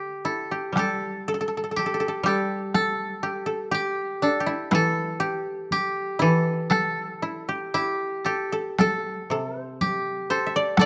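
Japanese traditional chamber music with an austere, calm mood and a free, rubato feel, in a short passage cut from a longer piece. Three kotos played with fingerpicks carry the music: a mellow, up-front melody sits over a brighter, woody second line, while a lower koto supplies the accompaniment. A taiko ensemble struck with heavy sticks enters at 0.8 seconds, sounding close and dry, with the recital hall's moderate reverb around the closely captured, detailed instruments.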